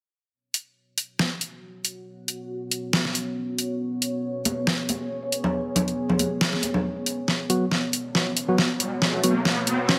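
A half-time 138 BPM groove in 4/4 with a light 16th-note swing drives this meditative, heavy deep dubstep excerpt, where an overdriven kit of bright hats and deep snare starts at 0.5 seconds, a dark, detuned sawtooth pad with chorus and built-in reverb holds sustained chords from 1.9 seconds, ringing high-tuned congas with dub echo pass through briefly, and from 7.3 seconds a drum fill builds while clean tine electric piano stabs run through a filter sweep and echo ahead of a rising electronic riser, all set in a moderate echo chamber.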